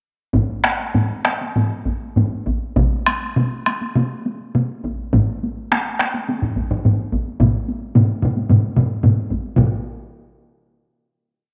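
A saturated, compressed solo taiko drum enters up front at 2.8 seconds with heavy-stick phrases, riding over three taiko ensemble parts that play from 0.3 seconds, one with hard sticks and a repeating pattern, one close with heavy sticks and a repeating pattern, and one heavy-stick part with its own taiko phrases. This whole Japanese traditional taiko piece in straight 4/4 feels ceremonial and powerful, speeding up from 98 to 121 BPM before a final hit at 9.6 seconds. The sound carries a small-room ambience, moderate spring reverb and the grain of a home cassette recording.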